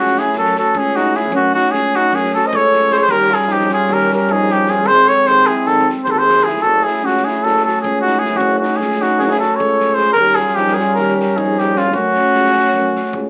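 A clear trumpet with light vibrato carries the melody up front in this fiery, bittersweet Balkan brass band passage, cut from a longer piece and moving at 305 BPM in eighths in a straight 9/8, in F# dorian with a raised fourth. Beneath it, a warm alto saxophone with vibrato and a smooth top plays a second line, while a distant, roomy trombone and a dark, close-miked euphonium with a soft attack fill out the accompaniment, all in a classical style. A tuba with vibrato anchors the bass from the background, sounding distant and roomy. An acoustic drum kit sits far back in a studio room, its fat snare and punchy kick entering at 0.1 seconds and stopping at 13.2 seconds. The harmony moves from F#m through D#7 and G# before returning to F#m, and the whole band is bathed in a wet studio reverb and the crackle of a very old 78 rpm record.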